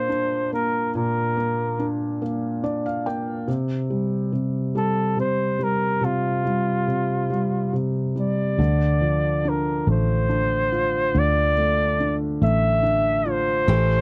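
A slow six-eight pulse of 47 beats per minute in dotted quarters carries this dramatic, melancholic pop ballad in D minor, a short excerpt cut from a longer piece. A flugelhorn sings the melody up front from the start, its tone punchy and vintage with vibrato in a soloistic pop style. Beside it, a felt-muted upright piano supplies soft, intimate accompaniment, the action noise of its keys audible, and it adds a fill between 2.2 and 3.5 seconds as the harmony moves from Bb to Csus4. At 8.6 seconds the music settles on Dm and a fingered electric bass enters with a round, foam-muted, amped sound. In the final moments a fingerpicked steel-string acoustic guitar slips in with quiet arpeggios, all captured in a dry, close studio sound with a 1970s character.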